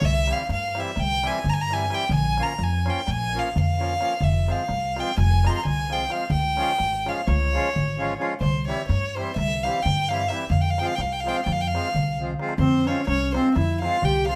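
Balkan wedding-band folk in a restless, virtuosic 9/8 at 258 BPM in F harmonic minor, cut from a longer piece, where an up-front, intimate violin sings the melody with light vibrato and an airy, soft-attack bow over woody, thumpy pizzicato upright bass, a small clay-shell darbuka played with soft hands in the background, and dry, reedy accordion accompaniment entering at 0.3 s, until a drum fill at 12.1 s ushers in a warm, classical-style clarinet second line at 12.6 s, all played live in one room with wet studio reverb.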